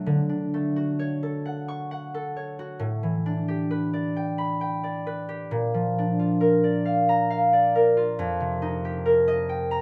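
Wistful and gentle, this short classical excerpt for solo concert harp unfolds in a slow 3/4 at 67 BPM, its rubato feel letting the phrases breathe freely. The harp is the only voice, sitting up front with a warm, ringing acoustic tone that is fingerpicked across a span from F2 to C#6. Its harmony moves through Dmaj7, A9sus4, Bbmaj7 and F9sus4, with the shift to Bbmaj7 at 5.5 seconds bringing a tender, shaded turn. Close, detailed microphones catch the intimacy of each plucked note, while light reverb adds a soft halo around them. Tuned to A4 = 439 Hz, the passage runs just under ten seconds, ending at 9.8 seconds as part of a longer piece.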